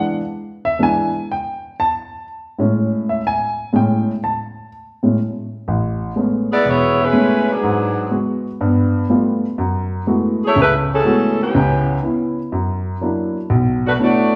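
A dark saxophone section carries the melody in this joyful, brassy jazz piece, entering at 6.5 seconds with a light vibrato and a vintage, ensemble character that sits up front. Before that, the baby grand piano plays alone from the start, setting a swung 4/4 groove with intimate, natural tone, audible action noise and short sustain. The piano stays in an accompanying role, reaching from deep bass notes to the upper middle of the keyboard. The harmony opens on E7 resolving to Amaj7, then moves at 5.7 seconds into a richer passage of extended and half-diminished chords such as G9, F#m11 and F#7b13. A large studio reverb lends the recording a wet, roomy quality, placing the listener further back in the space. The cut is taken from a longer piece and breaks off about eight seconds after the saxophones arrive.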